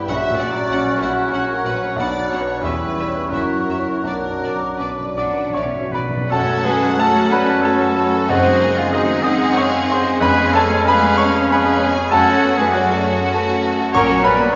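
A grand piano with long sustain leads the melody up front in this tragic, passionate romantic excerpt in 3/4 at a rubato 78-101 BPM, beginning in B minor and moving to F# minor at 6.3 s, as a focused, lush violin section also carries the melody while a clear close-miked oboe, a hollow, distant silver flute, a second violin section in the background, a very quiet clarinet and a mellow bassoon add supporting lines over very quiet French horn chords, violas, expressive cellos and smooth double basses, with timpani playing from 4.0 to 9.2 s, the whole heard in the wet reverb of a recital hall.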